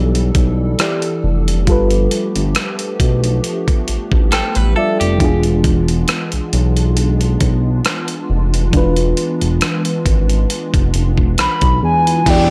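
A mellow, chorused FM electric piano, a flute-like warbling pad and a smooth, up-front synth bass open this sensual, longing contemporary R&B excerpt at a slow 68 BPM with a lightly swung feel, joined at once by a dusty, gritty sampler-style drum kit with a thumpy kick, rim clicks, hi-hat and crash as the harmony moves from Em7 to E7b9, while the electric piano adds a fill, a bright, twangy clean guitar plays brief arpeggios with tape echo at 4.3 seconds, a hollow, woody clarinet-like synth lead carries the melody from 11.4 seconds, and an electronic downlifter sounds at 12.3 seconds, all in a dry, gritty hardware recording.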